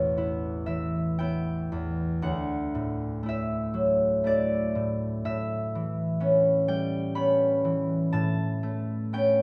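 In a rubato 3/4 at around 57-64 BPM, this gentle, wistful classical excerpt features a solo concert harp, fingerpicked and up front with a warm, ringing tone spanning A1 to B5, drifting through Aadd9, Dadd9, A9 and Bsus2/A chords in a moderate recital-hall reverb before the clip cuts off at 9.4 seconds.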